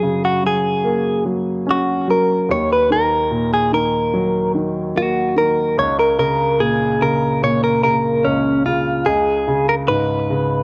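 In a straight, unhurried 4/4, this short pop fragment from a longer piece carries a longing, heartbroken mood as a clean, picked electric guitar, recorded direct and compressed with a phaser, sings the melody up front across both parts' full 10.6 seconds. A polished, present baby grand piano accompanies beneath it, moving from Gbadd9 through Ebm and Bbm/Db to Db5. Both parts carry a cassette-tape tint, and the home cassette recording sits in a light studio reverb.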